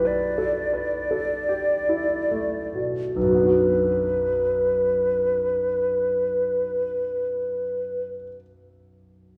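In a rubato 3/4 at a slow 34-46 BPM that eases back over the first 3.2 seconds, this wistful, hazy impressionist fragment in B minor pairs a silver concert flute with a grand piano, drifting from a G69/B chord to B minor at 3.2 seconds. The flute carries the melody in a narrow compass from B4 to D5 with a pure, hollow, tongued tone and vibrato until 8.1 seconds. The piano accompanies with a clear, vintage sound and short sustain, ringing on alone until 9.4 seconds, while a recital hall's lingering reverb places the listener further back in the room.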